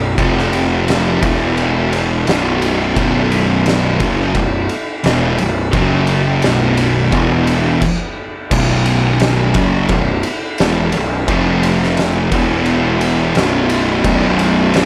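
A straight 4/4 pulse at 87 BPM drives this heavy, hypnotic stoner and doom metal excerpt, with an oversized low-tuned drum kit entering at 0.2 seconds, its punchy kick, fat snare, crash and ride sitting up front with a dark, saturated, rolled-off sound in a bright stone room. A thick, double-tracked fuzz guitar grinds out a distorted picked riff through power chords on B, E, F and F#, anchored beneath by a growly, overdriven picked electric bass. The riff cycles twice, with a full stop from 7.8 to 8.5 seconds before the band crashes back in, all set in a studio reverb.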